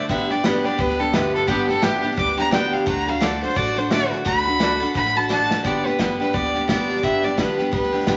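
A swung 4/4 pulse at 173 BPM carries this nostalgic, easygoing honky-tonk and classic country passage in G major, which moves from G to D and back to G. An up-front fiddle with light vibrato and an airy, earthy bow plays a solo until 5.6 seconds, beside a bright, picked steel-string acoustic guitar, while a brilliant, polished upright piano sits in the background and drops out at 5.6 seconds after a drum fill. A woody, thumpy pizzicato upright bass on gut strings and a natural kit with a tight kick and medium-tuned snare keep time, and the mix sits in a wet large studio reverb with vinyl crackle and a dulled top end.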